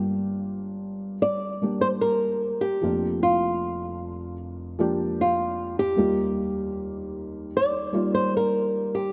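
A straight 4/4 pulse at 76 BPM carries this heartbroken, emotional pop fragment, cut from a longer piece, as a fingerpicked flamenco guitar with fresh strings sings a dark melody up front across the full 9.1 seconds. Beneath it, a felt-muted upright piano gives soft, intimate accompaniment through the whole passage, its thick felt lending a mellow, shadowed tone as the harmony moves from Gm7 to Bb/F at 2.8 seconds and Ebadd9 at 6.0 seconds. A lush hall reverb surrounds the pair with a long, gentle tail, and the recording's top end is rounded off.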